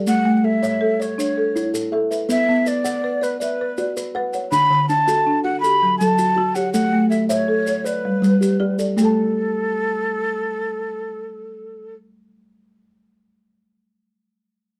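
A dark, warm small-room sound frames this hypnotic southern African traditional excerpt in a straight 12/8 feel, where a dry, rustic folk marimba and a woody, fingertip-plucked kalimba weave an mbira-style interlocking cycle of arpeggios beneath a breathy jazz flute melody with vibrato, while grainy maracas shake until 9.1 seconds and the chords move from A through Bm, D, F#m and G before settling on Asus4.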